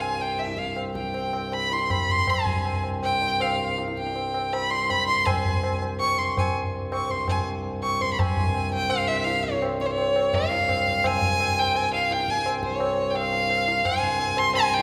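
A rich, bowed solo violin sits up front, singing a smooth, even melody with vibrato over a reedy, breathing pedal harmonium drone, while a high-tuned, ringing tabla joins at 0.2 s. This serene, meditative Hindustani classical passage in 4/4 gradually quickens from about 157 to 175 BPM, moving into a new section at 8.2 s. A wet hall reverb gives the recording a spacious, resonant sound.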